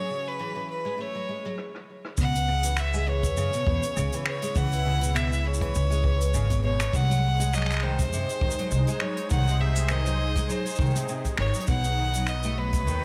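From the first moment, a clear, bowed violin carries the melody with light vibrato and a biting edge, its tape echo trailing behind. Beneath it sit a smooth, warbling analog pad with vintage sampler grit and a bright, fingerpicked steel-string acoustic guitar playing arpeggios. Both the guitar and the pad are under a filter sweep through the opening 2.2 seconds, while a brushed kit of finger snaps, hi-hat, rim click and shaker slips in at 0.3 seconds, muffled by low-pass filtering. A short drum fill and a stop lead into the fuller second part at 2.2 seconds, where a woody, thumpy pizzicato upright bass and a boomy kick join, the bass sitting up front. This intimate, autumnal folktronica piece in C# minor moves at 101 BPM with a gentle swing. Its harmony opens on F#7sus2 and shifts to C#m7, then through G#7/B# to B, and light reverb gives it the feel of a small studio room, as a passage cut from a longer piece.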